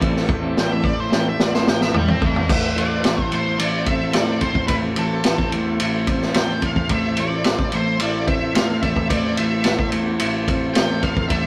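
A rough rehearsal-room recording with moderate small-room reverb, this trippy, mysterious psychedelic rock excerpt moves at 109 BPM in A minor, settled on an Am chord. The up-front vintage drum kit, with its punchy kick, high-tuned snare and rolled-off top, plays a fill from 0.3 to 2.5 seconds under a dark octave-fuzz lead guitar solo that runs through the first 2.5 seconds. Meanwhile, a twangy, slightly broken-up guitar through a small old amp plays a riff over a round, overdriven fuzz bass, a buzzy combo organ with heavy vibrato holds chords in the background, and a very quiet, softly plucked, shimmering tanpura drone lingers until 9.1 seconds.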